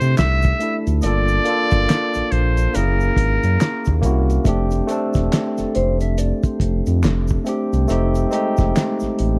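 A slow 70 BPM groove in 4/4 with a 60% swing on the sixteenths sets this warm, sensual neo-soul and R&B excerpt, cut from a longer piece and tuned slightly flat to A4 = 439 Hz. A cloth-damped, thuddy drum kit carries the beat throughout with a fat snare, tight kick, hi-hat and handclaps, its sound muffled, gritty and rolled off at the top, while an egg shaker and finger snaps sit quietly in the background. Underneath, a smooth synth bass with a dark, sustained tone and gentle vibrato sits up front, and a barky tine electric piano, lightly overdriven through a combo amp, comps bright chords moving from C6 through Gm9 and F#9 to F69 and F9. A trumpet with a metal mute takes the melody for the first 4.0 seconds, its buzzy, breathy, whispered tone close and intimate with a slapback echo. Later, from 5.6 to 7.7 seconds, a mellow, clean, fingered electric guitar adds a soft second line coloured by a phaser, all captured in a dry, close 1970s-style studio sound with little reverb.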